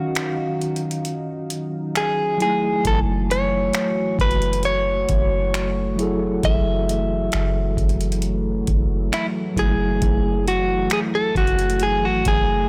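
Blown-out and overdriven under a light reverb, this sensual, moody contemporary R&B fragment at 67 BPM sets a picked, compressed clean electric guitar melody with tape echo over a mellow tine electric piano and a dark, warbling ambient pad with chorus, while a booming analog drum machine with metallic hats, finger snaps, a deep kick and a softly clipped snare starts at 0.2 s and a round, sine-like 808-style bass joins at 2.9 s as the harmony moves from Ebm9 to Gbm9.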